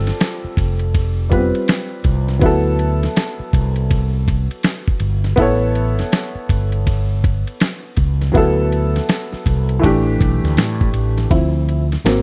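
A dry, close 1970s-style studio sound with a touch of digital ambience frames this mellow, smoky jazz-hop cut at 81 BPM in 4/4 with a swung 16th feel, where a woody, slightly detuned upright piano accompanies through chords such as G9sus4, D13 and A9 over an amped fretless electric bass, while a gritty, compressed sampler-style drum kit with a thumpy kick, medium-tuned snare, hi-hat and ride enters at 0.1 s, all three parts sitting up front until the fragment closes on a Dm9 that arrives at 11.3 s.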